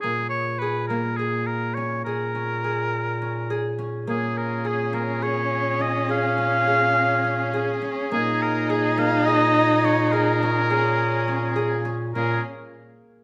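From the first moment, a clear, up-front oboe carries the melody between Ab4 and F5 with light vibrato, a soft attack and a smooth top. Beneath it a concert harp rings out fingerpicked arpeggios, and a close-miked bass clarinet holds a dark Bb2 in the low register. This is contemporary chamber music in an uneven 7/8 meter at 208 BPM counted in eighths, set in Bb minor over a Bbm7 chord, with a hypnotic yet restless mood. At 4.1 seconds a single bowed cello joins with a nasal, boxy second line between Db4 and Eb4, expressive with vibrato and portamento. At the same moment a bright woodwind section slips in behind the others with sustained chords. A moderate recital hall reverb surrounds the ensemble in this short passage cut from a longer piece.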